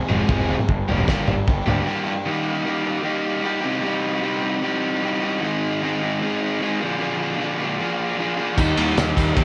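A restless, cool indie rock passage at 152 BPM in straight 4/4 opens at 0.0 seconds on a hollow-toned, overdriven semi-hollow guitar riff set in the background with subtle chorus and digital delay. An up-front raw garage guitar riff, a bright, fuzzed electric bass and a cloth-damped drum kit join almost at once over Fm and Gm. The drums sound thuddy and muffled, with a fat snare, tight kick, dark cymbals and gritty saturation. After a brief break, the garage guitar carries the riff alone from 2.3 seconds through Eb, Cm, Ab and Bb7. At 8.6 seconds the band returns on Eb, joined by a jingly tambourine tucked in the background. The whole piece, cut from a longer track, sits in moderate studio reverb and carries the worn, warbly pitch drift of old cassette tape.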